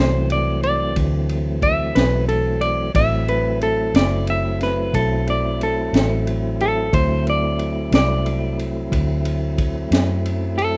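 Swaggering and laid-back, this slow blues in 12/8 moves with a straight, unhurried feel, cut from a longer piece and opening on a D7 chord. A clean, twangy electric guitar takes the solo from the start to 10.8 seconds, its fingered tone sitting up front in a high register. Beneath it, a tonewheel organ holds sustained chords through a slow rotary speaker, its sound clear and gently glowing. A vintage muted fingered electric bass gives a round, foam-muted, amped bottom end, placed up front alongside the guitar. The crunchy breakbeat drum kit enters at 0.3 seconds with a punchy kick, a high-tuned snare and a dark ride cymbal, its saturated, gritty sound and rolled-off top suggesting a small room. The whole thing has the rough, close feel of a home demo mix.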